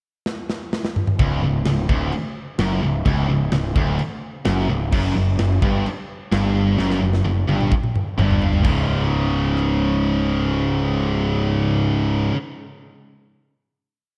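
A straight 4/4 drive at 129 BPM opens this short, complete heavy metal piece, as a tight, up-front acoustic kit with bright cymbals, a medium-tuned snare, a tight kick, china, crash, rim click and toms rolls in with a fill at 0.3 seconds. At 1.2 seconds the full band lands on a dark, epic single-note riff in C#: three picked guitars carry it, a distorted, compressed one in the background, a high-gain one, and a double-tracked overdriven part with a warmer tone also set back in the mix. Up front, a growly, fuzz-laden picked bass drives steady eighth notes that double the guitar riff, its overdriven tone cutting through with a bright, amped edge. The harmony moves from a Dmaj7/C# colour into chordless riffing before a second drum fill leads to a final C#5 chord at 8.6 seconds that rings out. A moderate, lush hall reverb soaks the whole mix in a dreamy haze, and a cassette-tape character colours the recording.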